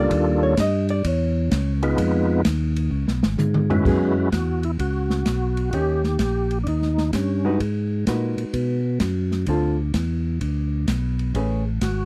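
Soul jazz organ trio in a swinging, greasy mood at 128 BPM in 4/4 with a triplet-feel eighth-note swing, cut from a longer piece and settling into F# mixolydian at 3.9 seconds. A dark, clean hollow-body electric guitar takes a fingered solo up to 3.9 seconds, capped by a drum fill from the acoustic kit with its dark cymbals, medium-tuned snare and boomy kick. A percussive tonewheel organ carries the melody with second-harmonic percussion, chorus vibrato, a slow rotary speaker and light overdrive, while a second tonewheel organ holds down a full, key-clicking bass through a stopped rotary speaker, all in a dry, close 1970s-style studio sound.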